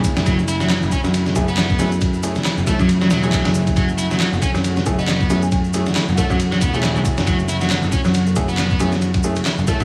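Breakbeat at 137 BPM with a swung 16th-note feel, this playful, funky cut rests on F#m7. An up-front, gritty sampler-style drum kit with a thumpy kick and fat snare drives it, alongside overdriven electronic shaker and handclaps, distant, very quiet congas and bongos, and a growly, tube-saturated picked electric bass. A clear grand piano throws stabs through dub echo, a picked, warm electric guitar riff with tube saturation and dub echo enters at 0.3 s, and dark, bowed studio strings hold sustained chords in the background with sidechain pumping. A pure, wooden baroque flute adds a very quiet melody from 5.0 to 6.4 s, all inside a small room with light reverb.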